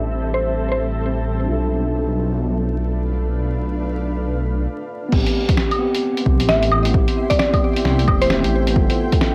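A menacing, detuned saw bass with a saturated filter swell sits up front in this ghostly, rainy future garage excerpt at 132 BPM in A minor. It shares its sidechain pumping with a mellow tine electric piano and a blurred, granular cloud pad, all moving through Am7 and Bm7b5 under a filter sweep, while a woody, round FM mallet pluck adds brief chorused melody lines with 12-bit grit and tape echo. After a short break from 4.7 seconds, the groove lands at 5.1 seconds with a punchy, overdriven kick and a muffled, compressed sampler kit of snare, hi-hat, claves and crash swung on the 16ths, all in an echo-heavy mix with vinyl crackle and a low-pass filter, before the excerpt ends on G7.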